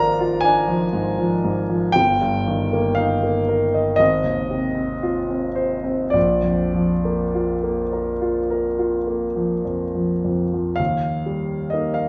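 Freely flowing rubato in 4/4, drifting between 49 and 65 BPM, carries this dreamy, tender romantic nocturne for solo concert grand piano in Eb major, a short passage cut from a longer piece. The piano sits up front with an intimate, natural tone, deep bass reaching down to G1, long sustain and audible action noise, all bathed in a wet large-studio reverb heard from further back in the room. Harmonies move from Bb7/Ab through Eb/G and Fm7/Ab to Bb, before a new section arrives at 10.8 s and settles on Eb.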